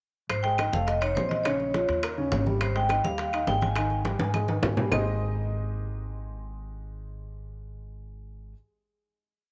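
The vibraphone leads this short, lively Afro-Cuban jazz piece in Ab major at 208 BPM, its medium hard mallets drawing a bright, airy tone with a slow motor vibrato and a touch of tape echo as it states a motif-based melody in period phrases from 0.3 to 4.6 seconds. Up front, the upright bass plays a growly, woody pizzicato tumbao that anticipates the chords, carrying on to the end alongside an upright piano whose short-sustained montuno in octaves runs from 0.4 seconds. Underneath, damped, low-tuned congas with slaps and open strokes, tight high-tuned bongos in steady eighths with hand bell, and dry claves tapping a two-bar time line sit in the background, while ringing metal-shell timbales work a shell pattern and bell. A drum fill from 4.2 seconds closes the brisk, sophisticated phrase, and the percussion drops out at 5.0 seconds. Bass and piano sustain a final Abmaj7 chord in light reverb and small-room ambience.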